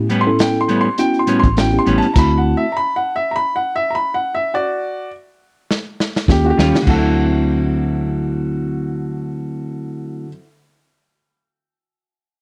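A woody, intimate upright piano solo opens over mellow tine electric piano, round, foam-muted electric bass and dark clean guitar stabs with spring reverb in this laid-back, soulful straight-eighth soul blues at 102 BPM in D mixolydian, while gritty, saturated breakbeat drums keep playing through a stop at 2.2 seconds and into a fill at 5.7 seconds, before the band returns at 6.3 seconds as the piano carries on, heard in a dry, close, 1970s-style small-room sound.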